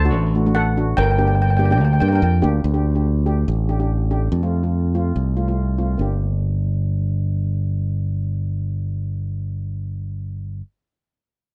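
A dark production with light reverb frames this short, intense calypso cut from a longer piece, moving at 143 BPM in G minor with a dramatic edge. A shimmering lead steel pan carries the melody for only the first 2.3 seconds, while a mellow double seconds pan struck with soft rubber sticks supplies accompaniment through to 10.6 seconds. Beneath them a bright, up-front fingered electric bass holds the low end across the chords D, Gm, Dsus4 and F.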